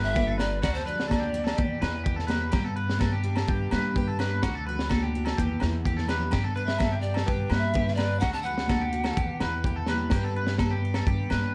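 A straight 4/4 groove from a crunchy, saturated breakbeat kit with a tight kick and high-tuned snare drives this joyful, danceable highlife guitar band clip, where a woody, growly pizzicato upright bass sits under a bright jumbo steel-string acoustic guitar and a twangy, slightly broken-up electric guitar playing arpeggios through subtle chorus and tape echo, while distant high-tuned congas and ringing agogo bells stay in the background, a drum fill lands at 5.8 seconds, and an airy bamboo pan flute with vibrato and chiff carries the melody at the start and again from 6.5 seconds over a G, D, Em cycle in moderate studio reverb.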